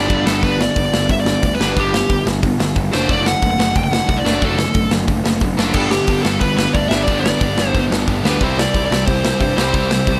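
This short cut from a longer punk rock piece sounds dry, with little reverb and some lossy compression artefacts. It runs at 180 BPM in a straight 4/4 in G major, and the mood is rowdy and energetic as the chords move through G, D/F#, G and C. Up front, a dark, smooth overdriven lead guitar carries the melody between G4 and G5, matched by a big acoustic rock kit with a punchy kick, a medium-tuned snare and bright cymbals ringing in a large room. Behind them, a picked distorted electric guitar and a warm semi-hollow guitar play riffs in the low and middle register, while a growly fuzz bass, picked and played both direct and amped, holds the bottom. A double-tracked high-gain guitar sounds only briefly at the start, then returns at 5.7 seconds to thicken the riffs through to the end at 10.2 seconds.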